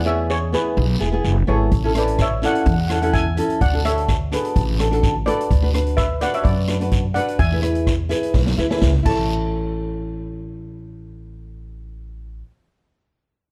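A shimmering steel pan, struck with hard rubber sticks and close-miked so it rings bright and dry, carries the melody in this bouncy, festive calypso cut from a longer piece. A fingerpicked flamenco guitar sits up front with the accompaniment, while a woody, thumpy upright bass with gut strings plays a pizzicato line beneath. A raspy guiro comes in just after the start, and an acoustic street-band drum kit joins at 1.7 seconds with a boomy kick, medium-tuned snare, rim clicks, hi-hat and crash, all heard in a natural studio-room sound. The kit plays a fill from 8.3 seconds, and soon after, both it and the guiro fall away, leaving pan, guitar and bass to carry a new section. Moderate reverb and a dark production frame the music, with a light swing on the sixteenths.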